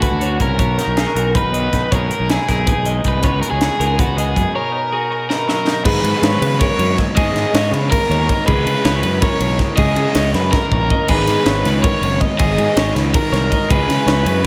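A bright, intricate math rock and midwest emo excerpt in 7/8 opens with a compressed, overdriven lead guitar up front carrying the melody through tape echo, two twangy, clean twelve-string electric guitars (one comping chords with subtle chorus until 7.2 s, the other playing arpeggios in the background), a growly fuzz-fingered bass and a crisp fusion kit with a high-tuned snare, punchy kick and pumping small-room sound. At 5.9 s the chords shift from major-seventh and ninth colours into minor ones as a crunchy, double-tracked guitar riff with lush chorus joins in the background, and drum fills mark the turns. A wet hall reverb soaks the whole mix in a dreamy haze.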